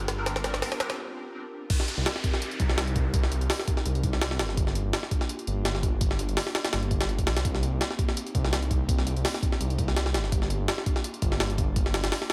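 A gritty, sampler-style jungle drum kit drives this raw, nostalgic drum and bass passage at 167 BPM in 4/4, its sixteenths carrying a light swing, with a thumpy kick, a high-tuned snare, hi-hat and crash sounding compressed, pitched up and tape-warm, as if re-recorded in a large room yet sitting up front. The piece opens on a short build-up in C minor, where a drum fill and an electronic riser run together until 1.0 seconds, a brief band-passed chord stab flashes in with a nasal, ring-modulated bite through phaser, ensemble chorus and dub echo, and a break follows before the drop lands at 1.7 seconds. From the very start, a thick, detuned saw bass, saturated and menacing with an audible beating, holds the low end up front, while an airy, breathy pad with a noise layer and a moving notch drifts softly in the background through its chorus. The harmony alternates between Gm7 and Cm7, changing every few seconds across the drop. 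Overall the mix is dry, with little reverb, and the passage is cut from a longer piece.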